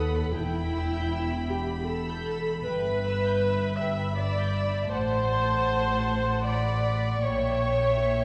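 From the first moment a full string orchestra plays together in this slow, melancholic and solemn romantic excerpt in E minor, in 3/4 at 78 BPM with a rubato feel, as a rich violin section carries the melody with a soft attack, sul tasto tone and light vibrato alongside a warm second violin line, an up-front dark viola accompaniment, and bowed cellos and double basses playing the bass, set in concert hall reverb heard from further back while the harmony moves from Em through Em/G and F#dim/A to A#dim7.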